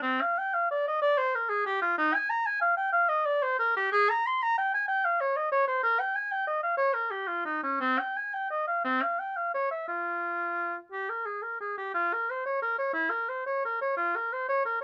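Lightly reverberant and roomy, this short passage from a longer work presents a single mellow oboe playing a solo classical fantasia in a baroque manner. The mood is flowing and introspective, with a rubato pulse of around 56-64 BPM counted in dotted quarters within 6/8. The oboe carries the line throughout its 14.8 seconds, ranging from C4 to C6 with a light vibrato and tuned to A4 = 436 Hz. The music opens in C minor and moves to F minor at 3.9 s, and a new section begins at 12.0 s.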